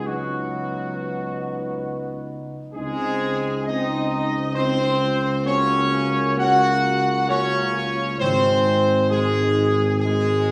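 Triumphant yet solemn, this classical brass passage in 3/4, cut from a longer piece, has a dark, tight trumpet section carrying the melody up front, while tight, bright trombones and mellow French horns hold sustained chords beneath, the trumpets and trombones both singing with light vibrato. A close-miked tuba anchors the bass for the full 10.5 seconds as the harmony moves from Cb/Db through Ab/Db and Gb/Db to Ab. The ensemble is heard from further back in a wet, roomy recital hall, giving the distant trumpets a ceremonial glow.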